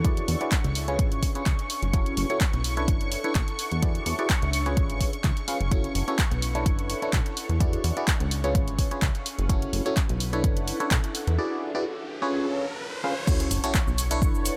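Piano house with an energetic, soulful, swung feel: a biting, percussive FM electric piano riff with phaser, low-pass filter and dub echo rides over a funky, plucky analog bass, a punchy overdriven kick and a tape-warm drum machine of crash, handclaps, hi-hat and shaker. Meanwhile a silky detuned string pad with ensemble chorus holds sustained chords and a blurred granular cloud pad sits in the background, both pumping to the sidechain through E9, C#7, F#m7 and Bm11 chords until a riser and sub drop from 11.0 seconds lead through a break into the drop at 13.3 seconds.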